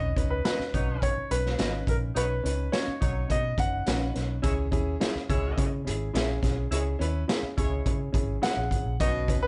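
A raw garage drum kit sits up front in this uptempo 1960s-style soul excerpt at 105 BPM, its punchy kick, medium-tuned snare and hi-hat sounding gritty and saturated in a small, pumping room with a rolled-off top. A clear baby grand piano carries the melody with audible action noise and plate reverb, playing from the start to 4.1 seconds and returning at 8.4 seconds, while a woody upright piano with short sustain supplies accompaniment throughout. A dark, foam-muted picked electric bass gives a round, punchy bottom, and a mellow electric guitar adds clean, fingered stabs in the background through a lush chorus. A distant, roomy horn section with light vibrato plays a second line, and a baritone saxophone slips in a brief jazz-style riff at 9.0 seconds. The harmony moves from Badd9 to C#m, and the whole piece feels warm and danceable under light reverb.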